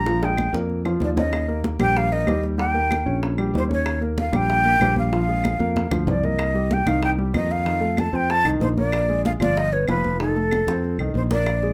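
A breathy, expressive jazz flute carries the melody up front over a growly, punchy fingered electric bass and an intimate grand piano with audible action noise, while bright high-tuned congas, tight bongos and woody claves sit in the background of this lively, sophisticated Afro-Cuban jazz excerpt at 189 BPM, moving from Bb5 through Eb7 and Cm7 to F7 in a moderate club reverb, with drum fills at 0.1, 5.6 and 10.5 seconds.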